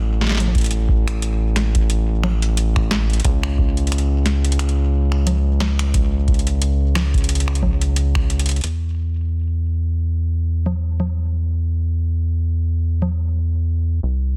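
A cerebral, melancholic IDM excerpt sits on a lightly swung 4/4 groove, cut from a longer piece. A rubbery, hollow square-wave bass carries the low end from the start, sitting up front with a dark, resonant filter pluck and a bouncy, wave-folded edge. An analog drum machine brings congas, finger snaps, metallic hats and a crisp snare, its dry hits set in studio reverb and tape echo. A deep electronic kick joins at 0.5 seconds and drops out at 8.3 seconds as a drum fill begins, leaving the bass and the drum machine for the second section. The mix is dense and heavily limited, wrapped in a digital ambience.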